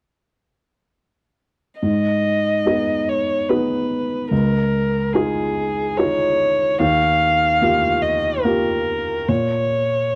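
Longing and melancholic, this fragment of neoclassical piano and strings moves in a rubato 3/4 at 72 BPM in G# dorian, where a dark, veiled con sordino violin sings the melody with vibrato and portamento over a mellow, intimate felt-muted upright piano accompaniment with short sustain, following the progression G#m, C#add9, D#add9, A#m. Both sit up front from 1.8 to 10.2 seconds in a dry, close 1970s-style studio sound with a light small-room reverb.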